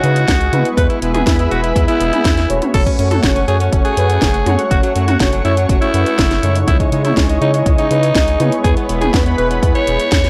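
A raspy, up-front alto saxophone carries the melody with scooped, punchy notes over this melodramatic, danceable italo disco excerpt at 122 BPM, moving through C#madd9, E and F#m. Bold, nasal analog synth brass stabs with chorus and a thick, warbling unison pad sit above a round, deep analog bass, while an overdriven house drum kit with cracking snare and bright hats is joined by a punchy electronic kick at 0.3 seconds. The sound is dry and gritty, with the character of cassette tape.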